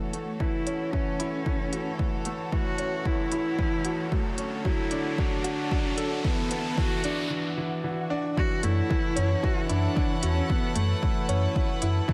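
Melancholic and cinematic, this excerpt of piano and strings electronica in F# minor at 113 BPM pairs a dark, woody cello melody with a clear concert grand piano riff carrying audible action noise over earthy sustained chords from a chamber string section, the three bathed in shimmer reverb, while smooth electronic hi-hats and a punchy, overdriven kick drum carry a build-up lifted by an electronic riser and swell until the drop at 8.4 seconds, just after which a round sine sub bass with sidechain pumping enters at 8.6 seconds.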